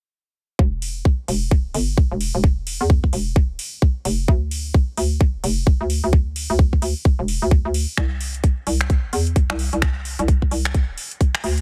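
A dry, tightly produced sound opens this aggressive, bouncy bass house excerpt at 130 BPM in E phrygian with a 16th-note swing, where a hollow, knocking FM bass with a punchy fast attack, overdrive and sidechain pumping sits up front beside a tight layered electronic kick from 0.6 seconds, while a tape-warm house drum kit with metallic hats and finger snaps, re-recorded in a small room, enters at 0.8 seconds.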